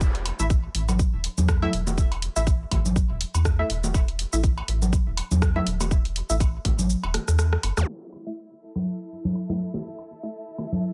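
Minimal techno at 122 BPM with a 16th-note swing, sparse and cool, built on a tight, up-front electronic kick, a rubbery, hollow square bass that pumps against it, filtered garage hats, cabasa and rim click, and tape-warm cowbell, congas and bongos recorded in a small room. A muted, deep dub chord stab with lush chorus, cassette tape character and tape echo decays over an A5 chord, while the kick drops out at 6.9 seconds and a drum fill follows at 7.1 seconds, ending in a brief electronic zap. From 7.9 seconds a filter sweep moves across the stab as a distant, clear symphonic string section enters with vibrato and sidechain pumping, all in a dry, low-pass-filtered mix cut from a longer piece.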